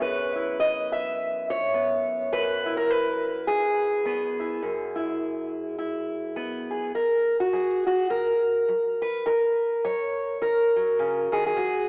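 A fingerpicked steel-string acoustic guitar, a dreadnought with fresh strings and a full-bodied, up-front tone, carries this short folk piece alone, cut from a longer performance. It moves at 104 BPM in 4/4 with a gentle swing on the eighth notes, set in F# mixolydian and ranging from F#2 up to E5. The first section rests on an E/F# chord, then at 6.9 seconds the music settles onto F# for a second section that runs to the close at 11.9 seconds. The sound is that of a home cassette recording with a narrow, telephone-like quality, wrapped in a lush, wet hall reverb that lingers around each note. The mood is nostalgic and warm, like a private memory played back from old tape.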